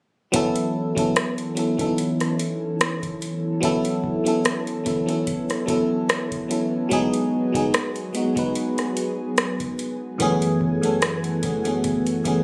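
A lightly swung sixteenth-note feel in 4/4 sets a late-night, longing contemporary R&B mood. A booming analog drum machine sits up front with a deep kick, metallic hi-hats and rim clicks, beside a glassy, bell-like FM electric piano whose chorused chords strike fast and decay. Behind them, a lush, warbling pad of detuned sawtooth and square waves swells in slowly and holds through B9sus4, G#m7 and F#m11 in a lightly reverberant room that sounds captured on a phone.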